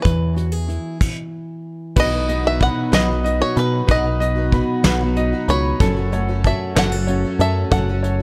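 A twangy bluegrass banjo with analog delay carries the melody in this uplifting, nostalgic indie folk excerpt in 6/8 at 63 BPM in B mixolydian, over fingerpicked steel-string acoustic guitar, round, punchy electric bass and up-front brushed drums with a fat snare, with a shimmering twelve-string acoustic guitar under lush chorus and brilliant, woody upright piano arpeggios with analog delay joining at 2.0 seconds, after a stop, as the chords move from E to B to F#m in a dark, dry production.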